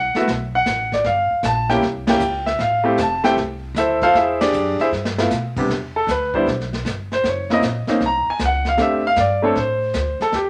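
An up-front concert grand piano with a deep bass carries the melody through this playful jazz piano trio at 155 BPM in a swung 4/4, over woody pizzicato upright bass and a dark, smooth brush kit with dark cymbals and a rolled-off top, with band accents at 2.0 and 4.3 seconds, a short drum fill, and a piano solo from 5.7 seconds in a moderate studio reverb.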